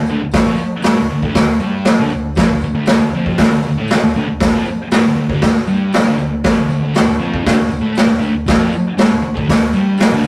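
A thick, double-tracked fuzz guitar riff opens this gritty, menacing garage rock excerpt over a single minor chord, quickly joined by a very quiet, jingly tambourine and a raw drum kit of punchy kick, snare and hi-hat with a saturated, rolled-off top, all caught in a rough rehearsal-room recording with a small room's moderate reverb.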